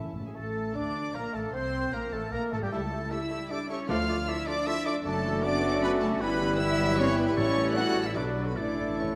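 A brisk 3/4 pulse at 153 BPM drives this spirited, lively classical-period orchestral passage, cut from a longer piece, which opens in D minor and brightens to D major at 5.0 s. A rich, floating symphonic violin section carries the melody high in its range, bowed sul tasto with a soft attack. A distant silver flute, an oboe with a smooth top, a clarinet in the background and a very quiet chamber violin section weave second lines around it. A bassoon and a vibrato-laden viola section fill in the accompaniment, with very quiet French horns holding sustained chords and a close-miked trumpet adding stabs from the background. A studio cello section and a pure double bass section anchor the bass, while round, soft-malleted timpani sound close and dry in brief fills at the opening and from 8.6 s. A wet scoring-stage reverb gives the ensemble a generous, hall-like bloom.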